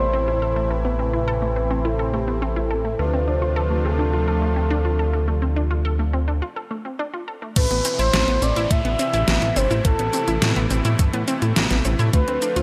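In a straight 4/4 pulse, this cinematic, nostalgic synthwave excerpt opens on a pumping bed of soft, detuned supersaw chords with a phaser, under a glossy, chorused synth bass that pumps as well. A round, bright analog pluck spins arpeggios with chorus and tape echo, while a smooth portamento lead carries the melody with vibrato, chorus and tape echo, its tone mellow and expressive. The harmony moves from Amadd9 to Dm7 and back, and a short break arrives at 6.4 seconds. At 7.6 seconds the drums arrive up front: a thumpy, sampler-style electronic kick and a layered pop kit with a deep, overdriven snare, hi-hat, shaker and crash cymbal bathed in gated reverb. A downlifter sits in the background over the same stretch, and the whole piece sits in light reverb and digital ambience.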